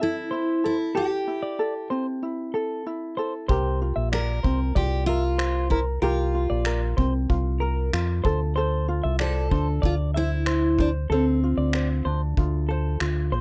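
A full-bodied, up-front picked steel-string acoustic guitar carries the melody in this carefree, easy-going acoustic pop excerpt in C mixolydian at 95 BPM, over a light, thumb-plucked ukulele and clean, compressed electric guitar arpeggios, with the melody stopping at 12.0 seconds. At 3.5 seconds a dark, round fingered electric bass joins alongside an unplugged kit played with bundle sticks, made up of finger snaps and a punchy kick, as the chords move from Am7 to C7sus4 and then Dm7. The sound is dry, close and detailed.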